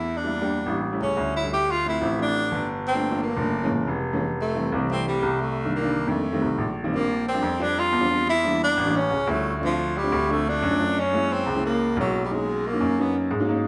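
Lively and sunny, this short cut from a longer Afro-Cuban jazz piece moves at a brisk 178 BPM in straight 4/4, centred on F major. A breathy tenor saxophone carries the melody as an up-front solo, close-miked with a soft attack and scooped notes in a jazz style, and it stops at 13.2 seconds. Beneath it, a clear grand piano holds down the bass line, sitting up front in the mix. A woody, boxy upright piano with short sustain enters at 0.2 seconds to fill in the accompaniment through colourful harmony such as Em7b5, A7, Dm9 and Gb9, with a Bmaj7 near the end. The band plays live in one room, bathed in a large studio reverb, with a soft top end that rolls off above 10.7 kHz, and the passage shifts into a second section at 6.9 seconds.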